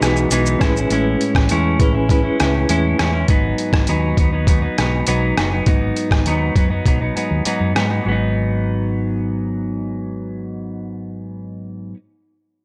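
A lonely, mellow bedroom-pop fragment at 101 BPM in G# phrygian, where a dark, clean electric guitar soaked in lush chorus and warbly pitch drift sits up front over a round hollow-body bass, a gritty, pitched-down trip hop sampler kit with a thumpy kick, rim click and shaker that drops out at 7.9 seconds, and a reedy, worn electric piano with fast tremolo and a cassette-tape tinge that stops at 3.3 seconds, all drifting from Emaj7 and Amaj7 into G#m7 in light digital ambience.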